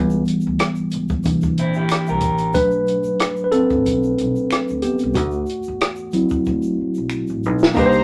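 Light reverb gives this close, intimate neo-soul R&B excerpt a soulful glow at 92 BPM, with lightly swung sixteenths under a worn, slightly out-of-tune tine electric piano that takes an up-front, mellow solo over chords moving from C#m7b5 through C9 and Bm7 to D9. A woody, dark pizzicato upright bass and a dry, compact cocktail kit with a high-tuned snare and tight kick hold the groove, joined by a close tube shaker and finger snaps, while a dark, slightly broken-up electric guitar through a small old amp adds a brief lo-fi picked line starting at 1.6 s. A drum fill arrives at 6.5 s, and a lush, bowed studio string section with soft-attack vibrato enters at 7.8 s.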